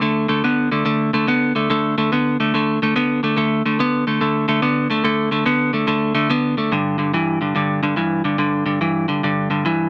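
A clean, picked electric guitar sits up front alone in this gritty, laid-back swung blues fragment, its compressed low-register tone moving from D5 to G5 at 6.7 seconds under a moderate studio reverb across just under 10 seconds.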